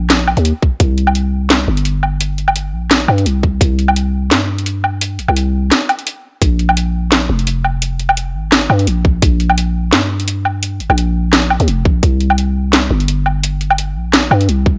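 A growling, buzzy 808-style bass with tube saturation opens this heavy, tense half-time drum and bass excerpt at 171 BPM, joined at 0.1 seconds by an up-front electronic kit of cracking snare, metallic hats and woodblock, while a tight electronic kick lands sparingly from 0.6 seconds, all in a dry, gritty small-room recording.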